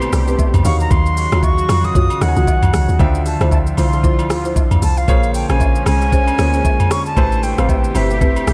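A round, dark log drum bass anchors this soulful, hypnotic amapiano excerpt at 115 BPM with a swung sixteenth feel, beneath an up-front electronic drum kit of knocking kick, smooth hi-hats, rim clicks, shaker and toms, while an airy, unsteady concert flute carries the melody over a worn baby grand piano, a detuned sawtooth pad with chorus and sidechain pumping, background agogo bells and woodblock, and dry, woody marimba stabs entering at 0.3 seconds, all drifting through echo-heavy reverb over minor-ninth chords from Am9 to Ebm9, Dm9 and Bbm9.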